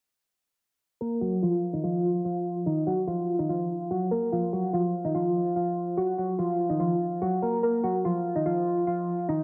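Hip hop excerpt at 145 BPM in a half-time feel, brooding and dark, where soft, round electric-piano-like synth keys carry the melody from 1.0 to 9.4 seconds over E-flat minor harmony, mellow and up front with chorus, phaser, delay and a filter sweep, all set in light digital reverb and the warbling pitch drift of worn cassette tape.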